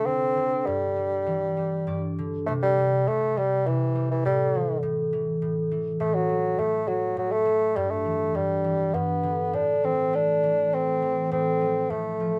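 A solo bassoon sings the melody up front, its warm, classical-style tone carrying a gentle vibrato through a low, comfortable range. This innocent, sleepy children's lullaby moves at 102 BPM in a straight 3/4 lilt, set in C major and tuned slightly below standard pitch to A4 = 436 Hz. A concert harp, also close and present, accompanies throughout with fingerpicked, ringing acoustic strings that span from deep bass notes into the upper register. The harp slips in a short fill from 1.6 to 2.5 seconds before the music opens into its longer second passage. A moderate studio reverb gives the pair a soft sense of space, and a faint mains hum sits beneath this brief cut from a longer piece.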